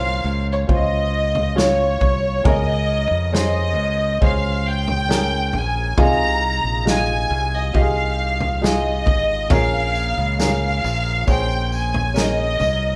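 A moderate stone-room reverb surrounds this short excerpt, with the band captured playing together live in one room. It is an emotional, longing pop ballad at 68 BPM in a straight 4/4, moving through Db6, Bbm7/Db, Fm7 and Bbm7. A lush, up-front violin section carries the melody with smooth, even bowing and vibrato, while an intimate, woody upright piano accompanies, its action noise audible beneath the strings. A bright fingered electric bass sits direct and forward in the low register, and a natural acoustic drum kit joins at 0.7 seconds with a punchy kick, a medium-tuned snare and toms. At 9.5 seconds a jingly tambourine appears far in the background, sounding distant in a large room.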